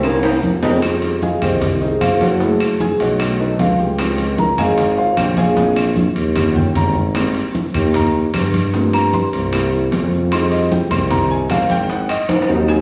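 Sophisticated and sultry, this brisk Afro-Cuban jazz excerpt in F minor at 152 BPM opens with a brief growl from raspy trombone and tenor saxophone before an up-front grand piano solo takes over from 0.8 seconds over rich minor and major ninth chords, anchored by a close, vibrato-tinged tuba bass and driven by ringing congas, distant metal-shelled timbales, soft round bongos, woody background claves and grainy maracas, with drum fills at 5.6 and 12.3 seconds, all set in a reverberant recital-hall space.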